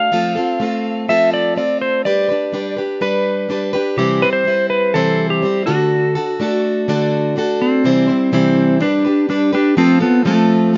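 Rock with an open-road, jangly mood, this short fragment sets a dark, clean lap steel guitar up front, its fingered slide melody marked by volume swells and a slapback echo, over a picked, plugged-in parlour acoustic guitar with a boxy, warm, fresh-string tone, all in light outdoor reverb with a muted top end, before the chords shift at 7.9 s.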